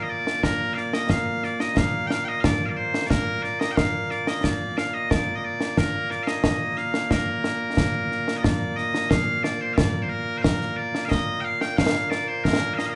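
The bagpipes open the recording, loud, bright and piercing, carrying a continuous solo melody up front in Bb major, ranging from Bb2 to G5. Concert snare drum and concert bass drum join at 0.3 seconds, sitting close, dry and up front, with dark cymbals. This is Scottish traditional pipe music in 2/4 at 90 BPM with a straight feel, and the mood is ceremonial and stirring. The band plays live in one room with moderate large studio reverb, and the sound has a softened top end. A new section of the tune arrives at 8.4 seconds, and the drums stop at 12.9 seconds just before the pipes, as this fragment is cut from a longer piece.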